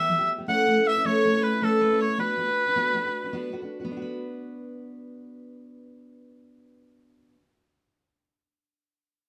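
A clear, up-front oboe carries the melody with classical-style vibrato in this short, dark and lively Celtic slip jig in B minor, moving at 106 BPM in a straight 9/8 with a wild edge. Alongside it, a biting, intense fiddle adds a quieter bowed second line with light vibrato, and both stop at 3.5 seconds while a dark, full-bodied fingerpicked steel-string dreadnought guitar carries on, finger squeaks audible, until 7.5 seconds. The harmony moves from Aadd9 to Bm in a moderate studio reverb, and the clip is cut from a longer piece.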